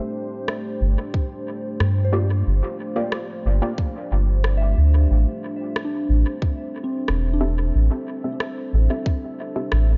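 Ambient dub at 91 BPM in 4/4, hazy and spacious, this cut from a longer piece moves from Gm7 to Am7 at 5.1 seconds over a deep, detuned pad holding slow-blooming chords with chorus and built-in reverb, while a soft, warbling FM bell arpeggio sits in the background with chorus and analog delay. An electronic rim click washed in dub echo enters at 0.5 seconds, and a round, up-front analog bass carries the low end from 0.8 seconds, soon joined by a tight, tape-warm electronic kick. From 2.1 seconds, a muted, evolving filtered chord stab with a short pluck adds phaser and dub echo to a dry, echo-heavy mix with a dark, rolled-off top.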